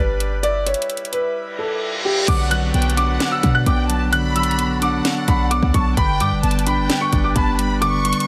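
A half-time trap beat at 130 BPM drives this eerie, hard-hitting hip hop excerpt in B minor, with up-front drums (hard-clipped kick, sharp snare, metallic hats and crash) over a deep, boomy sine 808 bass. A dark, boxy grand piano carries the melody through digital delay above reedy accordion chords; the drums drop out at 1.4 seconds while a reverse cymbal and downlifter sit in the background. At 2.3 seconds a lush, bowed violin section with vibrato adds a delayed second line and a mellow tine electric piano fills in accompaniment, all in a dry mix that moves from G to B minor and back to G at 6.0 seconds.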